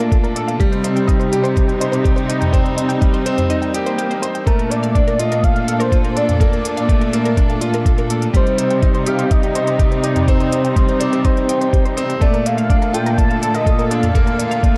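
Luminous and tender, this piano and strings electronica moves at 124 BPM in a straight 4/4, set in Bb major and cut from a longer piece. A bright, woody upright piano carries the riff, its action noise audible and its long sustain trailing into tape echo, while a muffled, thumpy electronic kick sits prominently beneath. A veiled, con sordino cello section holds the bass with vibrato, and a dark string section plays sul tasto sustained chords in the background, both breathing with sidechain pumping, as does a round analog pluck whose detuned sawtooth arpeggios pass through chorus and tape echo. An organic electronic kit adds crisp hats and toms with a tape-warm character, and during a brief break a background swell from 3.8 to 4.5 seconds ushers in a velvety synth lead at 4.5 seconds, its detuned unison tone carrying the melody with vibrato and chorus. The harmony rocks between Bbmaj7 and Cm, and the production is dark and softly lit, with light reverb and a digital ambience.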